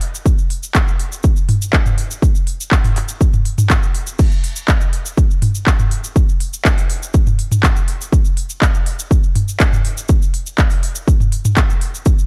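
A heavy, layered electronic kick drum sits up front and drives this short techno excerpt at 122 BPM in a straight 4/4. A techno drum kit fills out the groove from 0.0 to 11.9 seconds with crash cymbal, handclaps, smooth hi-hats and toms, also placed up front in the mix. A grainy, bright cabasa adds a close, dry acoustic texture at a lower level beneath the electronic parts. The production is dark with little reverb, giving the percussion-only arrangement a melancholic, cinematic mood across its single section, which is cut from a longer piece.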